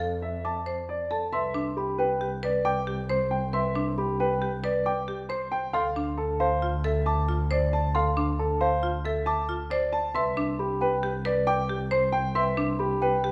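Set in a moderate recital-hall reverb, this bright, propulsive fragment of minimalist classical pattern music in 5/4 layers bell-like celesta arpeggios and woody hard-mallet marimba arpeggios over a warm bowed double bass with expressive vibrato, while a clear, up-front baby grand piano carries the melody from 0.2 seconds.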